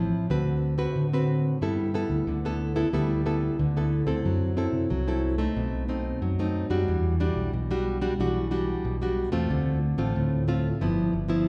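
A straight 4/4 samba and choro groove carries this sunny, joyful passage cut from a longer piece, built around an up-front, full-bodied nylon-string guitar fingerpicked in a deep classical tone. A growly, punchy fingered electric bass, amped and warm, plays beneath it, while lush chords such as G69, B7b9, Em9 and G13 drift by. Both parts sit in the wet reverb of a church or concert hall.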